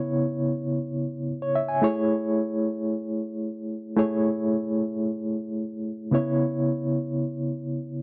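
Joyful and glamorous, this short disco fragment in free time features a lone electric piano playing solo across its full eight seconds, its reedy, barky tone lightly overdriven and pulsing with tremolo through built-in speakers. Sitting up front in a dry, close 1970s-style studio sound with light reverb, it moves from C#m7 to Amaj7 at 1.8 seconds and returns to C#m7 at 6.1 seconds.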